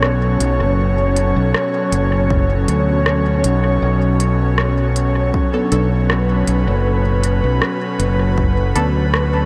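Soaked in a huge, dreamy reverb, this hazy, spacious ambient dub excerpt opens on a single Bm7 chord, held by an airy, breathy pad with chorus that sits up front beside a warm, fingered electric bass. An organic electronic kit supplies crisp hi-hat and rim clicks trailing dub echo, while a deep, tape-warm electronic kick joins at 2.3 seconds. From 5.5 seconds a very quiet, muted dub chord stab adds filtered, phaser-tinged plucks.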